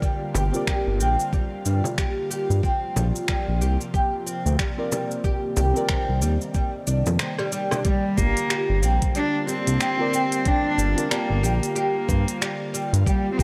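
A bright, woody oud plays plectrum-plucked arpeggios with tape echo over a smooth, up-front synth bass and a gritty, thumpy electronic kick, giving this earthy, meditative organic downtempo excerpt its swung groove. An overdriven electronic kit of finger snaps, hi-hat, rim click and shaker, a close, dry frame drum under soft hands, a breathy pad with chorus and phaser, and a deep, nasal chord stab with cassette tape and sidechain pumping sitting in the background fill out the dark production. After a drum fill as the kick drops out at 7.2 seconds, an intimate bowed cello takes the melody from 7.8 seconds with light vibrato and tape echo, just as the frame drum stops.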